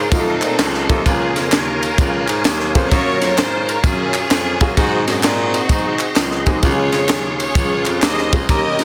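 A lush, distant string section carries the melody from the start over a fat, key-clicking tonewheel organ with slow rotary swirl and a smooth baritone saxophone playing the bass line up front, as a polished grand piano, a crisp fusion kit with punchy kick, high-tuned snare and ride, and background tambourine, egg shaker and group handclaps join at 0.1 seconds to drive this uplifting, soulful uptempo gospel excerpt at 129 BPM with a swung feel in Db major, moving through F7, Bbm7/Db, Gbmaj7, Ab7 and Dbmaj7 in light small-room reverb under a dense, heavily limited modern master.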